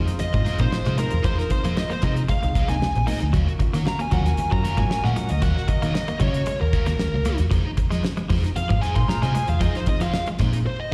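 Funk at 115 BPM in 4/4 with a straight feel, sly and hypnotic, this cut from a longer piece is built around a high-gain lead guitar solo that runs from 0.2 seconds to the end, dark and distorted with a slapback echo. Underneath, a damped 70s drum kit sits up front with a fat snare, tight kick and dark cymbals, while a vintage muted fingered bass gives a round, foam-muted bottom at the heart of the mix. A biting overdriven guitar adds accompaniment, a bright, twangy clean guitar plays a riff in the background, and a punchy horn section with light vibrato carries a second line, colored by slapback echo and analog delay. A worn, slightly out-of-tune tine electric piano drops stabs until 5.3 seconds and returns at 9.6 seconds, while very quiet, ringing high-tuned congas sit close and dry. The harmony moves from Fm7 to Ebm9 and back to Fm7, heard as a live gig through the venue's PA with recital hall reverb, closing on a band accent at 10.7 seconds.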